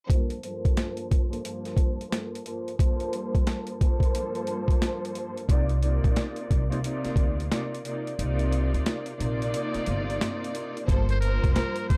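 Reflective and moody, this boom-bap hip-hop excerpt swings gently in a dark production with a light touch of reverb. A lush, bowed studio string section with smooth vibrato sits up front from the start, treated with filtering and plate reverb and shaped by a filter sweep, while a gritty, pitched-down, sampler-style drum kit delivers a thumpy kick, a high-tuned snare and hi-hat. At 5.5 seconds a woody, pizzicato upright bass enters as the harmony moves from Gm11 to Cm11. The kick drops out from 8.2 to 10.9 seconds, and the harmony returns to Gm11 as a new section begins. At 11.1 seconds a buzzy, breathy trumpet with a metal mute slips in with a thin, brilliant jazz-style solo line just before the clip ends.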